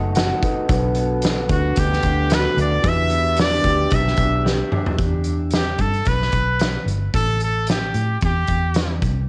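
Mellow and hazy, this short cut from a longer piece of indie bedroom pop has a lightly swung groove and the soft, worn feel of a home recording on cassette. A clean, mellow tine electric piano opens with a brief fill, while a dark, slightly broken-up electric guitar through a small old amp adds lo-fi accompaniment colored by analog chorus and vibrato. Underneath, a vintage muted fingered bass sounds round and foam-muted, and a loose indie drum kit brings a fat snare, a tight kick and a rolled-off top, roughened by 12-bit sampler grit. At 1.5 seconds a brilliant trumpet enters up front as the solo voice, pop-styled with light vibrato, scooped notes and a lush chorus. A drum fill leads into a second section at 5.0 seconds, where the electric piano drops away and the guitar follows soon after, leaving bass, drums and trumpet to carry the close under a light reverb.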